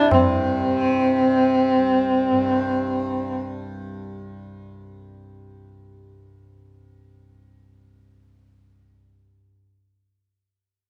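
Set in a small, reverberant room, this serene, devotional Indian classical excerpt at 158 BPM in 7/4 places a warm, bowed sarangi up front, its gliding, vibrato-rich melody sounding from 0.0 to 3.4 seconds over a bright, buzzing, shimmering tanpura drone, softly plucked and lower in the mix, that carries on until 9.5 seconds.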